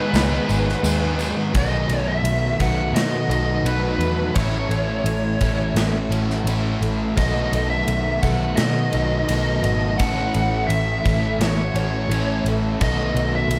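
Shoegaze-tinged dream pop rock with a wistful, dreamy feel, built on a dark, distorted bluesy lead guitar melody with tape echo over shimmering fingerpicked twelve-string acoustic arpeggios, two hollow-bodied overdriven semi-hollow guitar riffs in the background (one with lush chorus, one with reverse reverb), a bright, very quiet double-tracked overdriven electric riff that stops at 1.5 seconds, a round, foam-muted vintage bass up front, a distant jingly tambourine that drops out at 1.4 seconds, and a gated 80s drum kit with a punchy kick and bright cymbals in a stone room, all opening on G#m7 before moving between B7 and A6 chords under light reverb.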